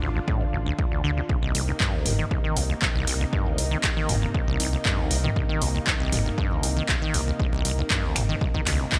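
Hypnotic and raw, this short acid house excerpt in straight 4/4 opens on a squelchy, resonant sawtooth acid bass riff, up front with tube saturation, 12-bit sampler grit and delay, over a deep, round analog bass and a lush, detuned unison pad holding sustained chords from Dm to Cm7 with chorus and sidechain pumping. A punchy, tape-warm electronic kick enters at 0.3 seconds, and at 1.5 seconds an up-front analog drum machine joins with finger snaps, handclaps, hi-hat and toms, both re-recorded in a small room. A digital ambience surrounds the mix, and the round bass drops out at 8.8 seconds.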